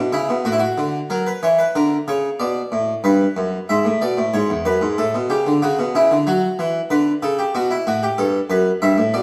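Classical baroque-style two-part invention in G major at 93 BPM in a straight 4/4, this joyful, lively fragment of a longer piece features a solo Italian-style harpsichord, airy and plucked with the full ring of two sets of strings, sitting up front in a reverberant stone room as its short opening on D gives way at 1.1 seconds to a longer passage moving through F#7, Bm, E7/G#, A and D before settling on Gmaj7 at 7.6 seconds.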